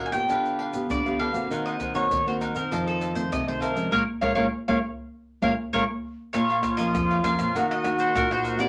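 A round, double-strung mandolin carries the yearning melody up front over crisp picked cavaquinho, a small fingerpicked nylon-string guitar in the background and a full-bodied, deep classical nylon-string bass guitar with audible finger squeak, joined almost at once by close, dry egg shaker, pandeiro, tight surdo and tamborim in this bittersweet samba-choro excerpt at 99 BPM, with a band accent from 3.9 to 6.3 seconds before a breathy, mellow, unsteady wooden flute with vibrato enters as a distant yet up-front second line, all set in a wet small room.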